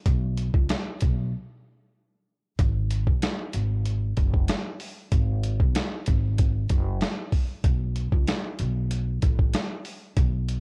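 A 4/4 groove with a light swing on the sixteenths drives this gritty, dark boom-bap hip-hop excerpt, cut from a longer piece. A sampler-style drum kit sits up front, compressed and gritty, with a thumpy kick, a medium-tuned snare and hi-hat, its sound re-recorded in a large room. An acoustic upright bass plays pizzicato in a low register, woody yet bright with the snap of steel strings, also placed close and forward. Both parts run together from the opening to the end, with a brief break between 1.3 and 2.6 seconds. The whole mix is dry, coloured by a worn cassette-tape character whose warbly pitch drift gives it a weathered feel.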